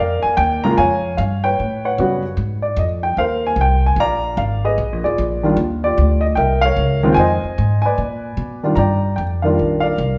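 A wet, large-studio reverb surrounds this swinging jazz piano trio excerpt, played live in one room in Eb major at 150 BPM in 4/4, where an intimate, dark, mellow baby grand with audible action noise carries the melody up front over a woody, pizzicato upright bass for the full 10.2 seconds, moving through rich chords such as A13 and Bb7b9 before arriving on Ebmaj9 at 8.8 seconds.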